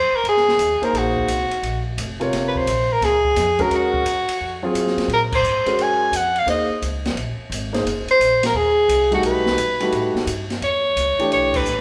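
A soprano saxophone with light vibrato and a soft subtone carries the melody up front in this hypnotic, spiritual modal jazz fragment, swinging over a woody pizzicato upright bass, an acoustic drum kit with dark cymbals and a punchy kick, and a grand piano with deep bass that enters at 0.8 seconds, the band playing live in one room, wrapped in a lush large-studio reverb and hitting shared accents at 5.3 and 11.5 seconds.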